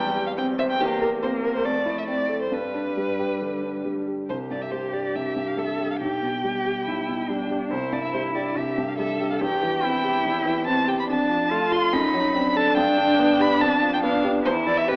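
A close, up-front violin carries the melody with vibrato, portamento and a soft attack in this spirited, cheerful classical-period movement for piano trio, set in C major at a quick 141 BPM. A rich, expressive cello adds a bowed second line, while a warm, polished baby grand piano supplies present accompaniment through chords such as Fmaj7, F#dim7 and G7/F before returning to C/E. The trio sits in a wet recital-hall reverb with an AM radio sound, in a fragment cut from a longer piece.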